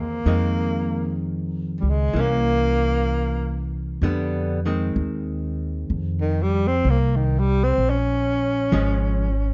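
Jazz ballad in F minor at a slow 64 BPM, swung in 4/4, this short passage from a longer piece carries a smoky, melancholic mood. A breathy tenor saxophone carries the melody with a soft attack, vibrato and scooped notes, its tone touched by a slapback echo, and from 4.0 seconds it takes a solo that runs to 9.5 seconds. An electric archtop guitar, hollow-bodied, dark and clean, supplies picked, compressed accompaniment. The upright bass is played pizzicato on steel strings, woody and thumpy, sitting up front with the guitar and saxophone. The harmony moves from Fm7 to C7b9, returns to Fm7 and settles on Bbm7, heard in a dry, close 1970s-style studio sound with a touch of studio reverb.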